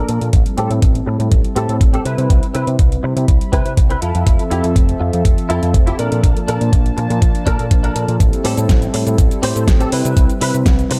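A smooth, detuned sawtooth pad with chorus, tape echo and sidechain pumping opens this cosmic, sleek nu-disco passage alongside a bright, twangy clean electric guitar riff softened by ensemble chorus and a low-pass filter, both parts carried by filter sweeps over a progression of Am7, Cmaj7, Fmaj7 and Bbmaj7. A punchy picked bass with an envelope filter and sidechain pumping enters at 0.1 seconds with an electronic pop kit of fat snare, metallic hi-hats and shaker, while an overdriven, thumpy sampled kick sits up front in the straight groove. The mix is dry and gritty with little reverb, and the clip is cut from a longer piece.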